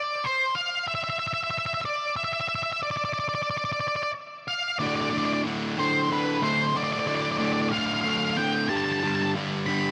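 An octave-fuzz lead guitar opens alone, its dark, distorted picked melody sitting up front with digital delay in a slow 6/8 rock setting at 62 BPM, melancholic and cinematic in D dorian. At 4.8 seconds a double-tracked overdriven electric guitar joins with a low, gritty picked riff over D5 and then G5 power chords, both guitars held close in a light reverb. The clip is cut from a longer piece and ends at 9.9 seconds.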